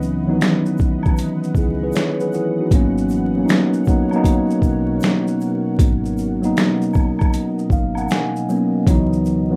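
This nostalgic, reflective lo-fi hip hop fragment opens with everything at once: a mellow, clean tine electric piano up front, a gritty boom bap drum kit, a round dub bass and a deep ambient pad, all moving at 78 BPM in 4/4 with a 66% swing on the sixteenths. The sampler-style drums sound compressed and thumpy, with finger snaps, hi-hat, shaker and a medium-tuned snare re-recorded in a large room. Beneath them the fingered bass stays dark and foam-muted, while the detuned sawtooth pad adds a moody, full-bodied bed of slow-attack chords with chorus and its own reverb. An egg shaker, woodblock and group handclap sit distant in the background. The harmony moves from C#m11 to G#m11 at 2.7 seconds, the electric piano plays a fill from 7.3 seconds, and C#m11 returns at 8.9 seconds, all under vinyl crackle in a rough home-demo mix tuned to A4 = 441 Hz.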